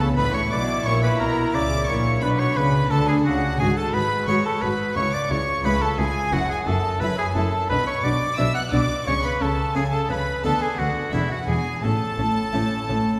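Heard from further back in a concert hall with a wet, lingering reverb, this brief passage from a longer baroque-style concerto movement has a festive, brilliant mood at a steady 88 BPM in 4/4, centred on A major. An up-front, clear oboe carries the solo melody with light vibrato in a classical style, while a focused, lush symphonic violin section also plays melody higher up and a rich chamber violin section sits in the background with a second line. A full-bodied harpsichord with two sets of strings supplies plucked French-style accompaniment, joined by a smooth, even viola section in the background. Underneath, a dark double bass section with a soft attack and expressive portamento and a distant, warm cello section carry the bass line, both bowed with vibrato. The harmony moves from B minor through F#7 and C# minor before an E7 at 11.1 seconds resolves to A major at 11.8 seconds, with the lower strings finishing at 13.0 seconds.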